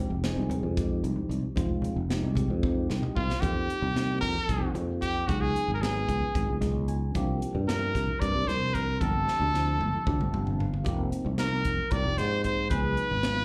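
Electric jazz fusion in a slick, driving 7/8 at 226 BPM, this live club performance, taken from a longer piece, opens on an F minor ninth chord before shifting into F dorian over suspended ninth harmonies, with a clean tine electric piano through a combo amp, colored by phaser and slapback echo, adding brief fills. A growly, up-front fretless bass anchors the low end, and a crisp, polished drum kit with a high-tuned snare and punchy kick propels the groove, dropping fills at 2.6 s and 9.3 s, while very quiet congas played with soft hands sit underneath. From 3.2 s a brilliant, forceful trumpet solo takes the lead with light vibrato and scooped notes, wet with slapback echo and plate reverb, the band captured through the venue's PA.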